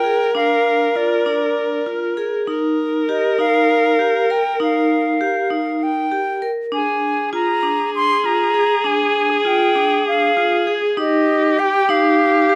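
Close, detailed microphones and a light reverb give this short recording an intimate, up-front presence. It is contemporary chamber music in 7/8 at 198 eighth-note beats per minute, with a straight feel and a hypnotic, urgent mood, and it is cut from a longer piece. A silver concert flute carries the melody between D5 and C6 with an airy tone and a soft attack, while a single bowed viola holds a smooth, nasal, slightly boxy second line from G4 to Bb4. Beneath them, a vibraphone struck with hard mallets plays bright, metallic arpeggios between D4 and Bb4, ringing with a medium motor vibrato. The harmony moves between Bb7 and Ebadd9, changing at 2.5, 6.7 and 11.0 seconds, and all three instruments play throughout the 12.6 seconds.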